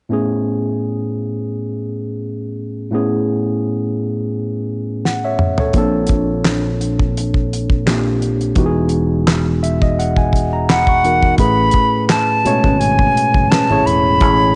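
A lightly swung 85 BPM groove in 4/4 carries this smooth, soulful neo-soul excerpt in A major, opening on a barky tine electric piano alone before a damped 70s drum kit with a fat snare, tight kick and handclaps arrives at 5.1 seconds, joined by a growly fingered electric bass with tube saturation, while a breathy, close-miked silver concert flute takes the melody up front from 10.7 seconds and a dark, mellow electric guitar murmurs briefly in the background, all wrapped in light reverb and the muffled, top-shy haze of a home cassette recording.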